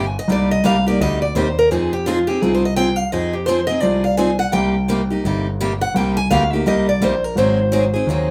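A brisk 169 BPM swing in 4/4 drives this virtuosic, swinging slice of acoustic string jazz manouche in C minor, moving through Cm9, Fm7, Cm7 and Ab7. Two picked steel-string acoustic guitars sit up front: a woody, boxy parlour-style guitar with old strings carries the solo second line, and a bright concert guitar with fresh strings plays the accompaniment. Beneath them a dark, mellow concert grand piano holds the deep bass, all within a moderate studio room.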